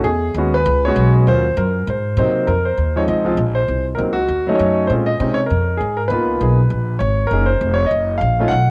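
Sophisticated and warm, this short cut from a longer jazz piano trio performance moves at a brisk, swinging clip in four. A concert grand piano carries the melody across a span from the tenor register into the treble, its natural tone and deep bass sitting up front with a faint cassette-tape tint. Beneath it, a pizzicato upright bass on gut strings plays a woody, thumpy line close to the listener, and both instruments sound from the first moment to the final second at 8.7 seconds. The harmony passes from an opening E6 through Ebm7 and Ab7 before a new section arrives at 2.5 seconds on a lush Dbmaj9, then drifts through half-diminished colors, Bbm9 and Db13 to settle on Gb6. A moderate spring reverb and the homespun character of a cassette recording give the whole a cozy, intimate room feel.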